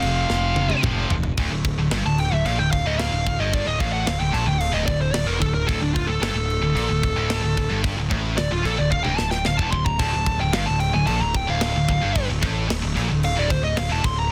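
A dense, heavily limited modern master with a dry, close sound frames this epic, heavy metal clip in 4/4, cut from a longer piece. It opens in half time on an F5 power chord, with a drum fill before the music settles onto D minor at 1.4 seconds. From there, a dark, distorted lead guitar sits up front and takes a high-gain solo to the end. Beneath it, a bright, double-tracked rhythm guitar grinds out a low riff, while a fuzzy, overdriven picked bass sits up front in the mix. The acoustic drum kit sounds tight and mid-forward in a studio room, with a tight kick, a medium-tuned snare with a touch of soft clipping, and crash cymbals, and it adds another fill at 8.9 seconds.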